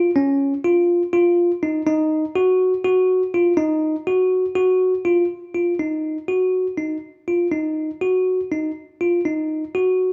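Bright and driving, this short progressive instrumental fragment in 7/8 features a solo tine electric piano, bell-like, clean and up front in a narrow middle register, played in a live room and bathed in the lush reverb of a large studio, shifting into a new section at 5.3 seconds before the cut at 10.1 seconds.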